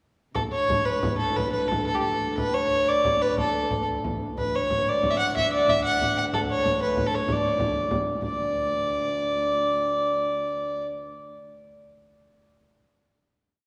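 A 6/8 dance pulse opens this short medieval dance piece, and the music steadily speeds up throughout, arriving at a held final note at 8.2 seconds. The mood is ancient and rustic, carried by a single bowed fiddle up front, with a nasal, reedy gut-string tone and a smooth top as it plays an ornamented modal melody. Beneath it, a bowed, fretted viola da gamba sustains a low, woody drone with light vibrato that rings on to the close. A deep frame drum, struck with hard hands and recorded close, keeps an evenly spread pattern until it stops at 8.4 seconds. The whole piece is bathed in a wet church reverb that lends the small group a cavernous air.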